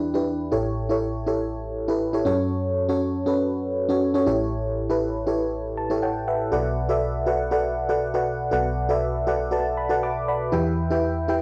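Urgent and dramatic, this short pop fragment, cut from a longer piece, is carried entirely by a single mellow FM electric piano in straight 4/4 time. The piano's tone is round and dark, with a fast attack that decays, a noise layer, and a chorus effect that thickens its full-bodied sound. It sits up front, covering a broad range from deep bass notes to high treble, and moves through minor and dominant seventh chords before settling into a new section at 6.5 seconds. Short piano fills arrive at 5.5 and 9.5 seconds, marking the turns in the harmony. A wet but short studio reverb surrounds the playing, and the cassette home recording lends the whole sound a soft, tape-worn character.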